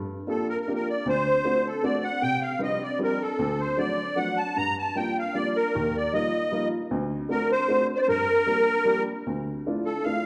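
A dark, warm production sits in a wet recital hall with a 1.5-second reverb. This whirling, nostalgic musette piece in G minor moves at 153 BPM in 3/4 with a rubato feel. A dark, mellow, woody upright piano with short sustain opens the accompaniment at 0.0 seconds, and a reedy, shimmering, airy musette accordion enters up front with the melody at 0.3 seconds before the fragment turns to a new section at 9.3 seconds.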